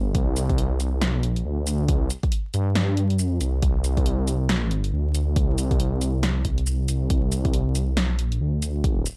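Meditative and heavy, this short cut from a longer deep dubstep piece moves at 138 BPM in a half-time feel with a 60% swing on the sixteenths. A dark, rumbling detuned sawtooth bass sits up front between G1 and G2, its unison voices beating against each other with a fast attack and long sustain, while an overdriven electronic kick lands deep beneath it. An overdriven deep house kit adds hi-hat, shaker and a punchy snare with a small-room character, and the whole dry, gritty recording carries a layer of vinyl crackle.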